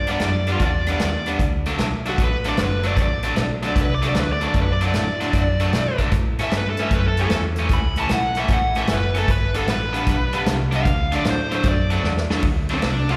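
Rollicking and soulful, this electric blues shuffle swings as a dark, smooth lead guitar with overdrive and slapback echo solos from the start, heard as if from a live gig through the venue's PA in a reverberant recital hall. Beneath it, a bright, overdriven semi-hollow guitar plays the riff with spring reverb and slapback echo, while a vintage foam-muted fingered bass adds a round, amped low end. A natural-sounding big-band drum kit with a punchy kick and medium-tuned snare drives the groove and rounds off the section with a fill at 12.0 seconds in this cut from a longer piece.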